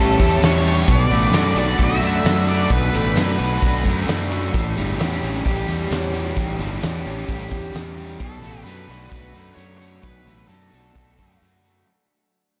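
A round, dark fuzz bass sits up front with a loose indie drum kit, its fat snare and boomy kick pumping in a church-like room, driving this blissful, dreamy shoegaze and dream pop fragment at 131 BPM as it fades throughout and moves between A7 and Bm7. Two picked, overdriven rhythm guitars play riffs in the background, one compressed and cloaked in reverse reverb and the other a raw garage tone with lush chorus, while a brassy, airy sawtooth pad holds detuned, vibrato-tinged chords until 4.5 seconds. A distorted octave-fuzz lead guitar sings its melody through diffuse ambient delay, dropping out and returning at 8.2 seconds, all within a mix soaked in reverb.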